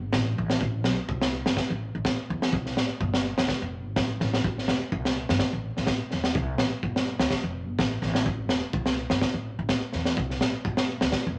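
Joyful and sunny, this short clip from a longer highlife guitar band piece moves at 126 BPM in 4/4 in C major, with a gentle swing on the sixteenths. A woody, thumpy pizzicato upright bass holds the low end from the very start, and a crunchy breakbeat drum kit enters at 0.1 s with a tight kick and a high-tuned snare, its gritty, saturated sound sitting up front with a dark, rolled-off top. Light reverb frames the pair in a studio-room space.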